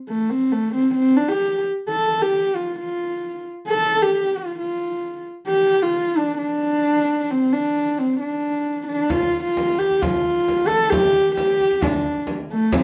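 A husky horsehead fiddle opens this short cut of solemn, vast Mongolian folk music, its bowed horsehair strings heard close and up front with a soft attack, light vibrato and sliding portamento as it carries the melody in D yu mode at a straight 132 BPM in 4/4. At 9.1 s a deep frame drum joins from a distance, struck with hard hands and sounding large and acoustic. The two play together until the close at 12.8 s in a moderate studio reverb, with the players captured live in one room.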